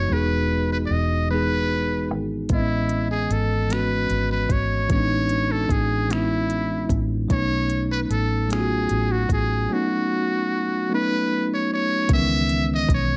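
A moderate studio reverb gives this brief, intimate slice of slow six-eight R&B a tender, close-up feel, with a buzzy, metal-muted trumpet up front singing a jazz-style solo line marked by light vibrato, breathy tone, scooped notes and a slapback echo. Beneath it, a bell-like, clean tine electric piano voices lush chords from Emaj9 through Amaj9#11 and B9 to C#m7, while a dark, round, foam-muted fingered electric bass holds down the low end. At 2.5 seconds an electronic, produced R&B kit joins with finger snaps, smooth hi-hat and a soft kick.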